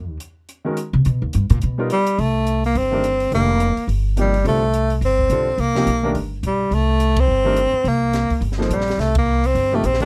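Close, detailed microphones and very little reverb give this cool, searching modal jazz clip in C dorian an intimate, dry sound. At a brisk 212 BPM in swung 4/4, a woody, thumpy pizzicato upright bass on steel strings opens with a short solo over Ebm11 and Gaug. A compact cocktail drum kit sits low and dark behind it, with a high-tuned snare, punchy kick, hi-hat and a smooth ride, its top end rolled off. A clear, open baby grand piano joins at 0.6 seconds, comping in the middle register, and the harmony later settles onto C7sus4. A breathy tenor saxophone enters at 1.9 seconds, up front with a soft attack, vibrato and scooped notes, carrying a warm melody in a narrow low range. The band hits accents together at 7.1 and 9.1 seconds.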